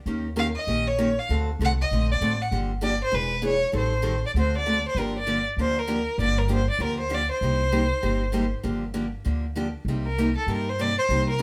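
A clear, focused violin carries the melody, bowed by a single player with vibrato and sitting up front from 0.4 seconds onward. This is a bittersweet, swinging piece of acoustic string swing in the jazz manouche style, in 4/4 with a lilting swung feel, cut from a longer performance. A bright, boxy parlour steel-string guitar, picked and placed up front, supplies the accompaniment across chords such as Eb7, D7b9 and Gm7. An upright bass plucks the low end on gut strings, its tone woody, dark and thumpy, also up front. The passage repeats the same section twice, moving from a turnaround of E7, Am7b5 and D7 into a stretch that alternates Gm7 and Cm7. The trio sounds like it is playing live in one room, with a moderate studio reverb around it.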